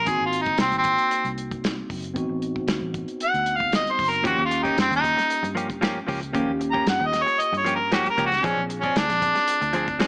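Straight-eighth soul blues in Eb mixolydian at 115 BPM, this gritty, soulful cut puts a mellow, overdriven harmonica up front for a solo full of scooped notes, backed by a worn, slightly out-of-tune tine electric piano swimming in lush chorus over chords moving from Ab9 through Adim7 and Eb9 to Bb9. A round, foam-muted fingered electric bass and a small-room soul drum kit with a tight kick and medium-tuned snare hold the groove, and a clean, compressed, direct-recorded electric guitar adds picked stabs from 4.2 seconds. Light reverb and a small speaker sound color the whole piece.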